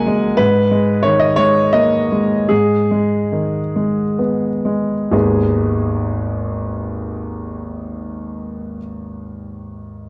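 This is a neoclassical minimalist piano piece in G# minor, reflective and intimate, moving in a rubato 3/4 between 63 and 97 BPM and tuned slightly low to A4 = 438 Hz. A single concert grand plays alone throughout the 10.1-second clip, which is cut from a longer piece, spanning G#1 to G#5 with a deep bass and a smooth, vintage tone that sits up front. The opening section slows down over its first 5.1 seconds, sounding a G#madd9 chord at 0.4 seconds before settling onto G# minor at 2.5 seconds. A second section follows from 5.1 seconds to the end. The piano carries a cassette tape character, and the home cassette recording places it in a small room with light reverb, lending the sound a close, private quality.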